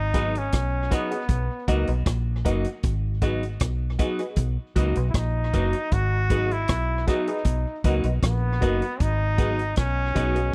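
A straight 4/4 roots reggae groove at 78 BPM in G# minor, cut from a longer piece, rocks between G#m7 and Bmaj7 with a serious, hypnotic pull. A vintage drum kit with a tight kick, rim click and hi-hat sits up front beside a round, punchy fingered dub bass that stays down low from F#1 to C#2. A clean, picked electric guitar wrapped in spring reverb and tape echo and a muted, detuned sawtooth stab with a filter pluck and phaser support a brilliant, forceful trombone whose light vibrato and tape echo carry the melody, all in a dry, close 1970s-style studio sound.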